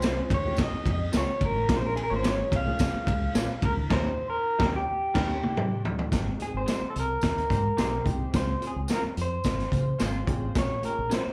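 This is an uptempo 1960s-style soul piece in Ab major at 108 BPM, with an uplifting, warm mood, heard as a live gig through a club PA with moderate club reverb. An electric guitar through a small old amp carries the melody with a slightly broken-up, picked, lo-fi tone, while a second guitar through a similar amp plays stabs. Both guitars, the woody, slightly detuned upright piano and the horns carry slapback echo. A round, dark fingered electric bass and a raw garage drum kit with a punchy kick, a gritty saturated sound and a rolled-off top drive the groove, with a jingly, bright tambourine set back in the mix. At 3.9 seconds a tight, vintage horn section with light vibrato enters on a second line as the band hits an accent, and a drum fill at 5.0 seconds leads into a new section at 6.1 seconds. The harmony moves through Dbmaj7, Bbm7 and Eb7 before resolving to Abmaj7, and the piece is cut from a longer performance.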